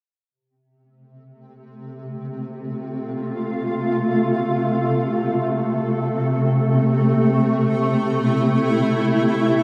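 Serene and weightless, this fragment of a longer ambient piece floats in free time in F major, tuned to A4 = 439 Hz. A shimmering pad enters at 1.9 s with sustained chords between C3 and F4, moving from F to Am at 6.0 s. Its bright, up-front tone is ethereal and detuned with a granular, octave-up shimmer, colored by chorus and its own reverb, all set in a wet echo chamber with a 2.2-second decay.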